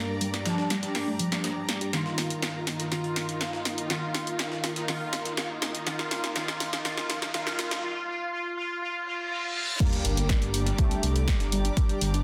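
Hypnotic and dramatic, this melodic techno passage at 122 BPM in G minor builds over Gm and Ebadd9/G chords. A juicy, resonant sawtooth polysynth melody with dub echo, lush bowed string chords, brassy pad stabs under a filter sweep, and soft round pluck arpeggios all pump to the sidechain, over a punchy analog drum machine and a gritty, very quiet breakbeat kit with faint risers. At 9.8 seconds a reverse cymbal gives way to the drop, where a layered electronic kick and a menacing, saturated detuned saw bass arrive up front in a dense, heavily limited mix.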